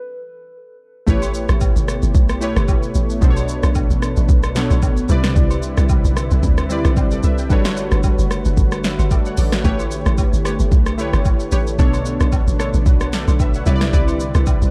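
This soulful late-night amapiano excerpt opens with a brief hollow, woody clarinet-like synth lead note before the drop at 1.1 seconds brings in a swung 4/4 groove of deep-kicked, punchy-snared house drums with hi-hat, rim click and shaker, along with a tight, up-front log drum bass, round detuned sawtooth keys with a filter sweep, a smooth mellow pad, and background agogo bells and woodblock. The music cycles through lush A9, Bm9, Cmaj9 and Gmaj9#11 chords until bright, punchy chord stabs with tape echo join at 9.6 seconds in a dark, ambient mix.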